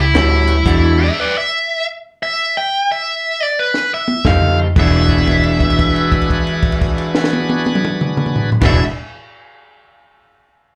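Heard through a club PA with a touch of room reverb, this rollicking, swaggering electric blues shuffle in E mixolydian swings at 117 BPM, an up-front overdriven lead guitar carrying the melody with slapback echo over a compact cocktail kit with a high-tuned snare and punchy kick. After a stop from 0.7 to 4.2 seconds, where the lead guitar and drums hold the floor, the round, foam-muted bass and a twangy, slightly broken-up riff guitar from a small old amp return at 4.2 seconds. A shouting, key-clicking tonewheel organ on slow rotary speaker rejoins at 4.6 seconds as a drum fill leads into the second section at 4.8 seconds, where a held note rings to 8.6 seconds.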